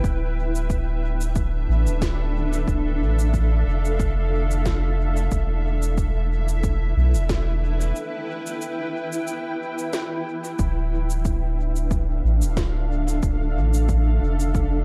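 Ambient dub at 91 BPM in D dorian, spacious and hazy, cut from a longer piece with a light 16th-note swing and chords moving from Dm to Em7 at 5.3 seconds and back to Dm at 10.6 seconds. A cloudy, evolving granular pad holds blurred, detuned sustained chords in its own reverb over a round, soft sub bass that sits up front, while an overdriven, layered kick and a woody snare with shaker, both re-recorded in a large room, carry the beat. The snare and shaker trail dub echo through an echo-heavy mix with little reverb, and a break arrives at 8.0 seconds.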